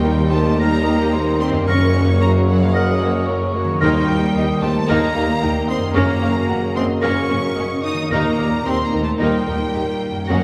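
A very quiet timpani stroke opens this soaring, heroic adventure film-score excerpt as most of the orchestra arrives together: a clear, lush violin section carries the melody with vibrato, while a dark, punchy cor anglais and a very quiet second violin section with expressive portamento add supporting lines, and a ringing harp plays arpeggios in the background. A close viola section provides accompaniment, and beneath it a rich cello section, a focused double bass section and a soft-attacked tuba form the low end, with a mellow French horn section and a bright trombone section holding very quiet sustained chords. A clear clarinet and an airy silver flute join softly at 0.6 seconds, the timpani returns at 3.8 seconds, and a lingering concert-hall reverb places the ensemble well back in the room.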